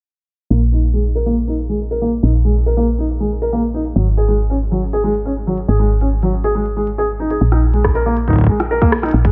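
A felt-muted upright piano opens this eerie, cerebral IDM excerpt at 0.5 s, playing soft arpeggios with audible action noise, coloured by vintage 12-bit sampler grit, a low-pass filter and tape echo. A woody, round FM bass enters with it, sitting up front with a fast attack and a decaying, mellow tone. A glitchy drum kit joins at 0.6 s with clicky hi-hats and rim clicks, its hats, snare and room darkened by low-pass filtering, given tape echo, and re-recorded in a large room. Filter sweeps move across both the piano and the bass throughout the passage, keeping the intimate texture in motion. At 7.8 s a tight, tape-warm electronic kick drum arrives up front, adding weight to the closing moments of this dry, filtered segment cut from a longer piece.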